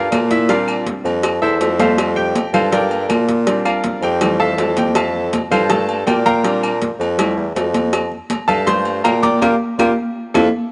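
Festive and joyful, this short cut from a longer salsa piece moves at a brisk, straight 4/4 pulse. A bright grand piano sits up front as both accompaniment and soloist, its brilliant, polished tone and short sustain ringing across a cycle of Bb6, Fmaj7 and Gm7 chords. Underneath, a clear bassoon carries the bass line with light vibrato and a soft attack, its classical-style voice placed up front. The percussion section fills out the groove: high-tuned congas with a thick skin and soft hands, a round, low-tuned cowbell that sounds close and dry, and ringing metal-shell timbales and agogo bells set in the background alongside woody claves with a vintage, band-limited character. Near the end the band hits an accent at 9.4 seconds, and a drum fill follows at 10.0 seconds, all wrapped in a light reverb.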